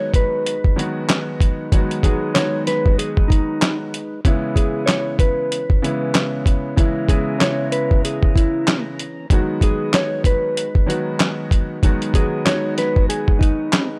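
A mellow, clean electric guitar melody with spring reverb, a woody upright piano with audible action noise, and a clear tonewheel organ turning through a slow rotary speaker in the background open this dark, tough boom-bap hip-hop excerpt at 95 BPM with a 16th-note swing, as a gritty, compressed sampler-style drum kit of thumpy kick, medium-tuned snare, hi-hat and handclaps sits up front over chords moving from B6 to C#m7 and back to B6, heard through a dry hardware recording with transformer saturation.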